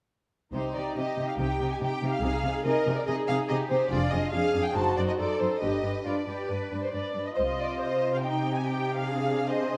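In a straight 4/4 pulse, this quick classical-period movement for symphony orchestra pushes forward with a dramatic, urgent character, cut from a longer piece. The first violins carry the melody up front with an expressive, vibrato-rich tone and soft attack, while a second violin line sits beneath in a smooth, even voice. The viola section adds accompaniment with a clear, focused sound that seems set farther back, and the cellos anchor the bass close and present. Double basses join the low end with a lush, bowed depth until 7.8 s, after which the cellos carry the foundation on to the close at 9.8 s. The harmony moves from the tonic minor through diminished chords to a dominant before returning home, all bathed in the reverb of a recital hall.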